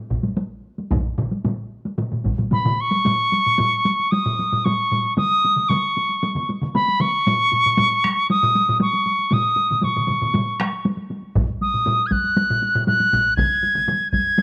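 A moderate echo-chamber reverb and small-room ambience surround this powerful, driving passage of Japanese traditional taiko drumming, cut from a longer piece in 4/4 at 116 BPM with uneven beats that keep speeding up. A vintage, band-limited solo taiko struck with heavy sticks plays alongside a taiko ensemble using hard and heavy sticks, one layer of it sitting in the background. At 2.5 seconds an up-front, reedy piccolo enters with vibrato and a crisp attack, carrying the melody between B5 and G#6 in a C# suspended pentatonic colour as the music moves into its second section at 3.1 seconds.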